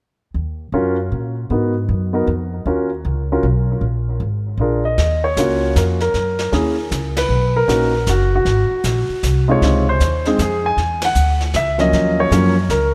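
Jazz piano trio in Eb minor at 156 BPM in a swung 3/4, smoky and cool, with a woody, dark pizzicato upright bass entering at 0.3 seconds, a warm, up-front grand piano carrying the melody through a diffuse ambient delay from 0.7 seconds, and a brushed kit with dark cymbals and a punchy kick joining at 5.0 seconds as the chords move from Ebm through Gb, Bmaj7 and Dbmaj7, with band accents at 7.1 and 11.0 seconds in this cut from a longer piece.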